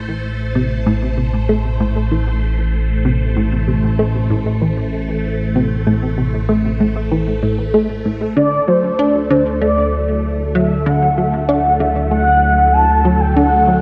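Expansive and hypnotic, this cut from a longer piece of ambient, sequencer-driven space music moves at a straight four-beat pace of 96 BPM. A phased string machine fades in from the start with swirling, vintage sustained chords, while a detuned analog drone beneath it provides a mellow, evolving bass foundation up front in the mix. From 0.6 seconds a plucky analog bass riff enters with a punchy, funky sawtooth-and-square character, its filter-plucked notes decaying and sent through analog chorus and delay as a filter sweep moves across the synth bass. At 8.4 seconds the harmony shifts from A minor to D7 and an expressive synth lead takes up the melody, smooth and dark with vibrato, ensemble chorus and analog delay. A wet spring reverb and an echo-heavy mix wrap the parts in a deep, spacious atmosphere.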